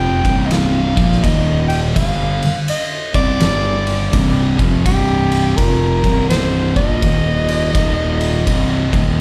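A swung 4/4 groove drives this sludgy, brooding stoner-doom fragment, cut from a longer piece and sounding like a live gig heard through a club PA with its reverb. An oversized, low-tuned acoustic kit sits up front from 0.2 s, with a punchy kick, fat snare and dark ride cymbal in a pumping, gritty room sound. Beneath it, two dark, picked fuzz guitars grind out the riff, one in the background with distortion and the other very quiet, while a growly, overdriven fingered bass adds punch and a breathy, whispered soprano saxophone plays an intimate jazz-style solo melody with vibrato and scooped notes.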